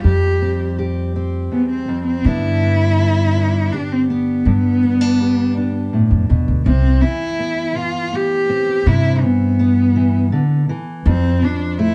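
Acoustic folk for a small group, hopeful and pastoral at 82 BPM in 3/4 and C major, cut from a longer piece: a dark, woody cello carries the bowed melody with vibrato up front over fingerpicked steel-string guitar, whose fresh strings let finger squeaks through, and a thumpy pizzicato upright bass that stops at 11.4 seconds, the trio set in moderate studio ambience heard from further back in the room as the chords move from Fsus2 to G, then to Cmaj7 at 6.7 seconds and F.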